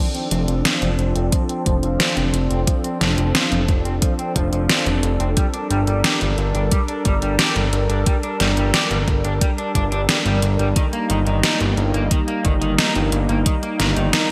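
A bright, 1980s-style digital sheen with light reverb frames this nocturnal, nostalgic synthwave passage, cut from a longer piece. A smooth, warbling vintage pad sustains chords moving from F6 to Gmadd9 to Eb/G with subtle chorus and sidechain pumping, while a twangy, slightly broken-up electric guitar picks a riff through lush chorus, delay and a low-pass filter sweep. Up front sit a fat, detuned sawtooth bass, also pumping, and an overdriven pop kit of hi-hat and deep snare with gated reverb, joined at 1.3 seconds by a knocking electronic kick.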